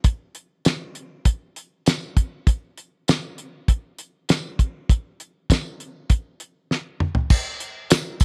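Sunny and driving, this short rock snippet in straight 4/4 sets a damped 1970s drum kit up front, its fat snare, tight kick, hi-hat, toms and crash sounding dry and mid-forward in a close small-room studio, with a fill at 6.7 seconds before a jingly, bright tambourine slips in at 7.3 seconds in the background.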